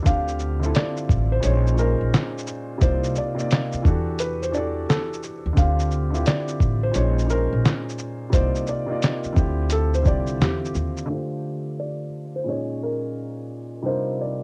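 A swung 87 BPM groove in 4/4 comes from a compressed, pitched-down sampler-style drum kit, with thumpy kick, fat snare, hi-hat, shaker and handclaps, sitting up front beside a woody, dark pizzicato upright bass in this melancholic, reflective lo-fi hip hop excerpt, until both stop at 11.1 s. Over them, an intimate upright piano with audible action noise voices smooth, vintage minor eleventh chords such as Dm11 and Bbm11 through cassette tape and a low-pass filter, while a felt-muted upright piano plays a soft, mellow melody with short sustain under the same tape and filter treatment. The two pianos carry on alone to 14.4 s in a home cassette recording touched by light reverb.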